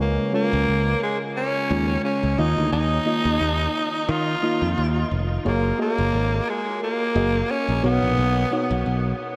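A growling, raspy tenor saxophone sings a nostalgic yet urgent 1980s-style pop melody with vibrato and delay, over a mellow, round FM electric piano with chorus and a bright, picked electric bass, all beginning together at a lightly swung 88 BPM in Eb minor. The chords move from Db through Ebsus2 and Gbadd9 to Badd9, and the whole dreamy mix is soaked in a huge ambient reverb. The saxophone drops out at 8.8 seconds and the bass at 9.1 seconds, and the electric piano carries on alone until this cut from a longer piece ends at 9.4 seconds.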